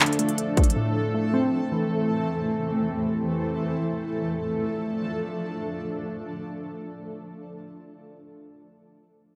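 A trap drum kit with a hard-clipped kick, crisp hats and handclaps sits up front for only the first 0.8 seconds of this melancholic, brooding hip hop fragment in free time and D minor, while glassy, detuned digital keys with chorus decay by 2.7 seconds and a cloudy, evolving granular pad holds sustained chords up front until 7.1 seconds, heard in a rough home demo mix with light reverb.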